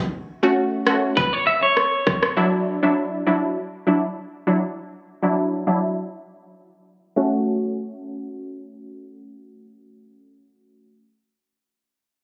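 This short excerpt sounds like it was captured on a phone in the room, with a muffled, low-passed top end and a long plate-and-club reverb that hangs around every note. It is sunny, summery dancehall in A major at 100 BPM, moving from A6 to Dadd9 and returning to A6 at 7.2 seconds, while a filter sweep runs through the opening stretch. A punchy chord stab carries the accompaniment from 0.4 to 11.0 seconds, its detuned sawtooth-and-triangle tone wave-folded and plucked through a filter, with a fast attack, a decaying tail, chorus and a pumping sidechain feel. An electronic island pop drum kit appears only briefly, with a tight, overdriven kick and a rim click up front. A clean, twangy electric guitar plays picked, compressed arpeggios between B4 and E5 during that same brief window.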